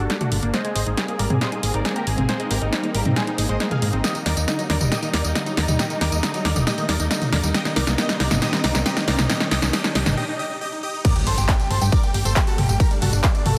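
A huge, detuned supersaw lead carries the melody through this euphoric, emotional uplifting trance excerpt at 137 BPM, phased, filtered and echoing over a build-up of dark, bowed symphonic strings, a chorused analog pluck arpeggio, and a round FM bass, all three pumping with sidechain. A dry, punchy analog drum machine and a very quiet riser and impact also drive the build, which halts at a break at 10.2 s. At 11.0 s the drop arrives, bringing an up-front layered electronic kick and an open baby grand piano line in the background, all set in a lush hall reverb.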